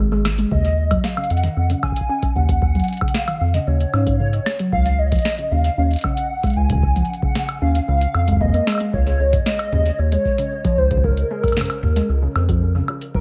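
A round, deep analog bass sits up front through this short IDM excerpt, its nasal, dark tone thickened by tube saturation and spanning Ab1 to Ab2. Above it, a warbly, dusty pluck plays arpeggios between Db3 and Db4, run through a phaser, subtle chorus and tape echo, while a nostalgic square-and-saw lead carries the melody from 0.5 seconds with vibrato, ensemble chorus and its own tape echo. The drums come from a booming analog drum machine with crisp snare, metallic hats, toms and woodblock, joined at 0.5 seconds by a deep, tape-warm electronic kick. At a straight 114 BPM in 4/4, the harmony opens on Ab5, then moves through Ebm7, a rootless Bbm/Db and Db6. Light reverb and an echo-heavy mix give the glitchy, cerebral piece a lo-fi, vintage haze.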